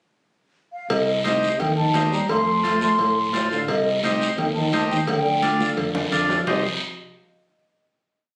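A straight 4/4 cumbia groove at 172 BPM drives this fiery, complete piece in C dorian, opened by a short pickup bar in which the mellow silver concert flute enters alone at 0.7 s. At 0.9 s the band arrives: a round fingered electric bass plays a cumbia bass figure, the raspy guiro scrapes long and short strokes, and compressed, saturated cowbell and timbales ring out. A vintage, buzzy combo organ comes in shortly after, up front with rhythmic triad chords moving from Cm to F, back to Cm and on to Dm. It is soon joined by high-tuned congas playing off-beat hand drums in the background. Over this the hollow, airy flute sings tongued, motif-based phrases with vibrato in a plate reverb, while a dark, punchy trombone with scooped notes carries a harmony line mostly in thirds. A drum fill from 5.4 s leads into a final Cm chord, all heard as a phone recording in the room with moderate studio reverb.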